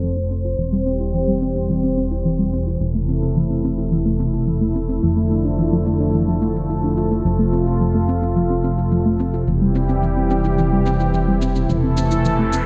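Nostalgic and nocturnal, this synthwave excerpt sets a bold, warbling brassy analog pad holding sustained chords over soft, round pluck arpeggios, a glossy chorused synth bass with tube saturation and a tape-warm cabasa, all under a filter sweep across the bright 1980s-style digital production, framed by a very quiet impact at the start and a riser from 12.3 seconds.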